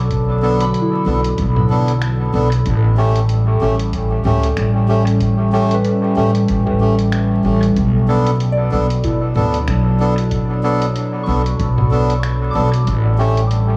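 Ambient dub with a spacious, hazy mood, this excerpt from a longer piece moves at an unhurried pace with a light swing, drifting between Bm7 and A7 chords. A warbling, nostalgic pad holds sustained chords throughout, its detuned, lo-fi tone softened by chorus and its own reverb, while a soft, pure FM bell plays arpeggios in the background through chorus, phaser and tape echo. Up front, a woody, thumpy pizzicato upright bass anchors the low end, and a reedy, breathy melodica enters at 0.4 seconds with stabs that ring out in dub echo. A deep, analog electronic kick sits in the background, joined by a muffled, pitched-down sampler-style kit of congas, finger snaps and hi-hat, the latter trailing dub echo, both in small room ambience. The echo-heavy mix is dusted with vinyl crackle and light digital ambience, adding to the hazy, spacious atmosphere.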